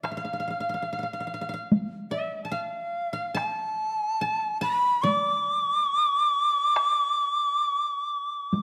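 A close, hard-stick taiko ensemble and a dry, woody, fingerpicked koto open this short, solitary and austere fragment of rubato Japanese chamber music, joined almost at once by an up-front bamboo shakuhachi carrying the melody with an airy, reedy tone, tongued chiff and vibrato, all set in a dark production with moderate recital-hall reverb.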